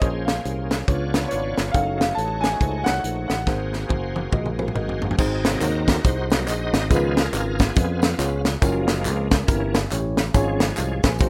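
Soulful and jubilant, this uptempo gospel excerpt moves at 140 BPM in 4/4 with a swung eighth-note feel in Db major, cut from a longer piece. A tight funk drum kit sits up front with a high-tuned snare and tight kick in a natural small-room sound, joined by a growly fingered electric bass that stays direct and forward. A mellow, clean tine electric piano comps in the background while a bright, shouting tonewheel organ holds sustained chords through a slow rotary speaker with light overdrive and chorus vibrato. A grand piano carries the melody with a natural tone until 4.7 seconds, and a drum fill from 3.5 seconds leads into the second half. From 5.2 seconds the organ takes a full-bodied solo over changes moving through Ab7, Db7, Gbmaj7 and Gdim7 to Db/Ab, while tambourine, maracas and group handclaps add a faint small-room bustle. The whole has the studio reverb and rough feel of a home demo mix.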